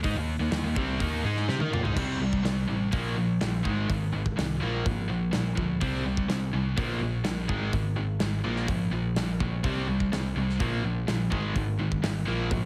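A straight, driving 4/4 pulse runs through this heavy hard rock excerpt, cut from a longer piece, with a big acoustic rock kit up front that pairs a punchy kick and a medium-tuned snare with hi-hat, crash cymbal and toms. The kit sounds dark and smooth in a big room, its top rolled off, and a drum fill from 1.5 to 2.0 seconds carries the opening Eb5 chord into a riff that cycles through C5, Bb5 and Ab5 power chords. Two picked electric guitars share the riff: one bright and crunchy with overdrive, the other a scooped, high-gain distorted tone set up front. Beneath them, a hollow-body short-scale electric bass, picked and amped, gives a round, dusky low end. Light reverb and heavy multiband compression give the whole mix a squeezed radio sound.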